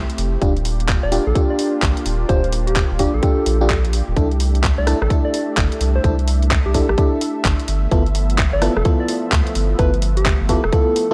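A dry, gritty hardware sound frames this bouncy, soulful slice of two-step UK garage, cut from a longer piece and moving at 128 BPM in 4/4 with a 64% swing on the sixteenths in C major. A tight, layered electronic kick and a garage kit of handclaps, rim clicks and bright hats drive the groove, with the kit entering at 0.1 seconds and the kick at 0.4 seconds. Underneath, a deep, thick saturated sub bass sits up front, its sustained notes pumping with sidechain compression. A warm, detuned sawtooth pad holds slow-blooming chords with a vintage warble and chorus, while a glassy FM electric piano adds bell-like, decaying stabs through chorus and analog delay. From 1.0 seconds a round, gentle keys-like synth lead carries the melody with vibrato and its own echoes, as the harmony moves from Ebmaj9 to C69 and then G13.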